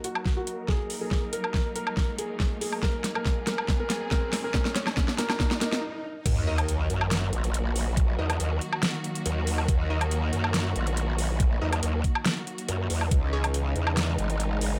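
Menacing and heavy, this half-time wobble dubstep passage at 140 BPM in Eb phrygian opens with a soft, felt-muted upright piano carrying the melody through a delay, its action noise audible, over lush, bowed symphonic strings that pump under a filter sweep while a huge-snared, overdriven dance kit with metallic hats, a knocking kick and background risers build toward a stop at 5.8 seconds. At 6.3 seconds the drop hits with an impact as a growling, saturated growl bass with chorus and a formant-filtered wobble enters beneath bold, punchy, detuned sawtooth stabs washed in their own reverb and delay. The harmony rests on Ebm before shifting to Dbmadd9 at 13.1 seconds, all under light reverb.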